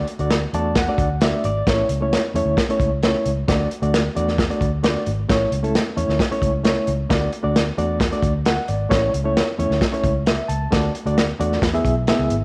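A wet echo-chamber reverb and small-room ambience frame this joyful excerpt of uptempo 1960s-style soul, its straight 4/4 groove moving between D and A before landing on E near the end. A reedy, clean electric piano with fast tremolo sits up front as the accompaniment and plays a fill from 0.3 to 1.7 seconds, while a foam-muted, round, punchy fingered electric bass holds down the low end. A saturated, gritty breakbeat kit with a tight kick, medium-tuned snare and hi-hat enters at 0.1 seconds, with a rolled-off top and a dark, crunchy character.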